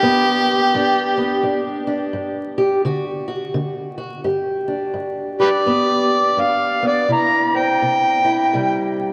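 An overdriven, amplified harmonica carries the melody up front in this laid-back acoustic country blues, its gritty tone colored by light vibrato, scooped notes, tongue slaps and a jazz-inflected phrasing. It takes a solo from the start to 4.3 seconds, then keeps leading through the second section until 8.9 seconds. Beneath it, a fingerpicked steel-string parlour guitar supplies a dark, boxy accompaniment, also placed up front, and rings on to 9.1 seconds. The pair moves in 4/4 with a lilting swing on the eighth notes, and the harmony shifts from G to D, then back to G and on to C. A drenched cathedral reverb casts both instruments into a vast, echoing space, while vinyl crackle lends the cut-off fragment a worn, old-record patina.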